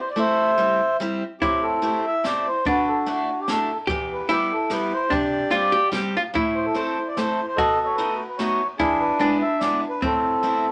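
Musette waltz in A minor at 146 BPM with a light swing, whirling and charming, led by a reedy, round accordion melody up front over a boxy picked acoustic archtop guitar with audible finger squeak from 0.2 seconds, joined at 1.4 seconds by a dark, clean, compressed hollow-body electric archtop playing a second line and a softly placed brushed jazz kit with dark cymbals, a high-tuned snare and boomy kick, set in a wet studio reverb in this short section cut from a longer piece.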